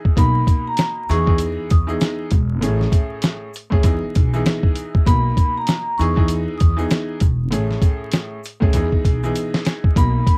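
A worn, slightly detuned upright piano opens this nostalgic, swung boom-bap hip-hop fragment, soon joined by a gritty, compressed sampler-style drum kit with a thumpy kick and fat snare up front, a metallic, ringing vibraphone melody with slow motor vibrato, dark, woody pizzicato upright bass and a very quiet, grainy egg shaker, with cassette-tape colour on the piano, drums and vibraphone, light reverb and vinyl crackle over the whole, as major-seventh chords cycle beneath a drum fill at 8.7 seconds.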